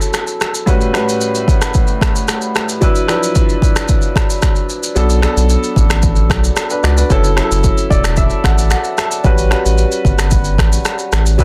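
A clear, worn baby grand piano sits up front with long sustain, voicing F#m7, A13, D69 and Bm7 changes and stepping out with a fill at 7.6 seconds in this breezy, joyful afrobeats passage at 112 BPM. A layered, tape-warm electronic drum kit with a deep kick, finger snaps, rim clicks and shaker drives the straight 4/4 feel, with soft clipping on the snare, and its kick drops out briefly just as a thick, saturated sub bass enters at 5.0 seconds. The mix is dry, dense and heavily limited, cut from a longer piece.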